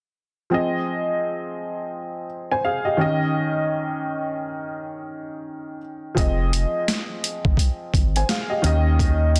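A swung boom-bap groove at 85 BPM in 4/4 sets a dark, gritty mood in F minor. A worn, woody, slightly detuned upright piano plays Fm7 and Eb7 chords alone from 0.5 seconds, until a round, deep analog bass and a pitched-down, overdriven sampler-style drum kit arrive at 6.2 seconds. The kit brings a thumpy kick, a high-tuned snare, handclaps and hi-hat, all sitting up front in a dense, heavily limited mix with light reverb, in this short cut from a longer piece.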